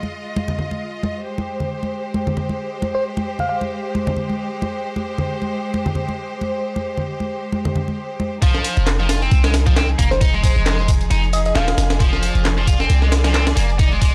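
Lush, bowed studio strings with vibrato hold sustained chords from the start, pumping with sidechain compression, while bright, close congas struck with hard hands drive the opening of this raw, funky breakbeat clip. A bell-like FM electric piano adds brief, sparkling phrases with a vintage warble, its chorus, small-speaker tone and analog delay giving it a lo-fi shimmer. At 8.4 seconds the track drops. The congas fall away as a compressed, sampler-style break kit arrives up front, with a thumpy kick, high-tuned snare, hi-hat and ride. A layered electronic kit of handclaps, hi-hat and tambourine sits tape-softened in the background, and a picked, double-tracked distorted guitar riff enters alongside, saturated and echoing through analog delay. From 8.8 seconds a deep, boomy 808-style bass with a fast attack and decaying sine tone anchors the low end, and the whole piece has a dry, gritty hardware character with cassette and transformer colour.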